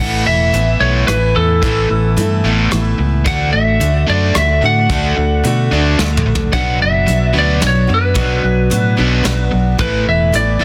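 Folk rock with a heartland rock lean, this short excerpt moves at 110 BPM in a straight 3/4 with a warm, open-road mood, stepping through Asus2, D and Bm before returning to Asus2. A twangy, slightly broken-up lead guitar carries the melody up front with tape echo, over a bright jumbo steel-string acoustic picking the accompaniment, a crunchy double-tracked overdriven guitar riff and a dark, round fingered bass sitting prominently in the mix. A soft brush kit with a tight kick and lightly clipped snare enters at 0.5 seconds and plays a fill at 6.0 seconds, all set in a small room with light reverb and a dense, heavily limited modern master.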